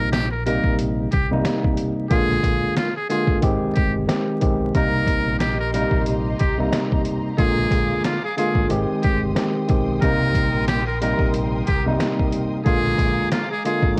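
A dusty home-cassette sound, flecked with vinyl crackle, frames this gritty, dark boom-bap hip-hop cut taken from a longer piece, with a swung sixteenth-note feel. A pitched-down, compressed sampler-style drum kit carries a thumpy kick, a medium-tuned snare and hi-hat, while very quiet, close and dry finger snaps add a human touch. Underneath sits a round, dark fingered electric bass, kept in the background, as a worn, slightly out-of-tune tine electric piano sits up front with chords that cycle through Cm7, Bb7 and Abmaj7. A trumpet with a metal mute plays the jazz-style solo melody, its tone buzzy and thin with light vibrato and a soft attack. From 4.7 seconds, a lush, bowed studio string section adds distant sustained chords in the background, giving the loop a rich, focused glow.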